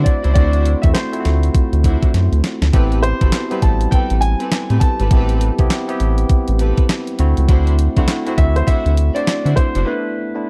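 A punchy, confident new jack swing excerpt in A dorian at 101 BPM opens on a D9 chord, with a warm, open concert grand piano carrying the melody over a barky, bell-like tine electric piano, lush bowed string stabs and an up-front, round analog bass that evolves with ring modulation. A clean 12-bit drum machine joins at 0.1 seconds with a thumpy kick, fat snare, hi-hat and handclaps in a swung sixteenth feel, adding a fill at 2.1 seconds as the harmony moves through Am9 and back to D9. With the bass, strings and drums gone, a break on Asus4 from 9.9 seconds leaves the two pianos in a dark, warm mix with digital ambience.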